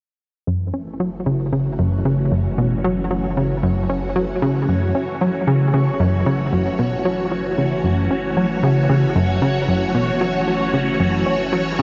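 Ambient, sequencer-driven space music at 114 BPM in F# minor, cosmic and expansive, where a punchy, funky analog bass riff with gritty 12-bit sampler character and tape echo sits up front beside a swirling, warbling string machine holding a bright F#m7 chord through ensemble chorus and phaser, both shaped by filter sweeps over the first 4.7 seconds, while a deep, round sine sub bass fades in underneath, the mix bathed in a huge, wet reverb with a dark top end in this short passage cut from a longer piece.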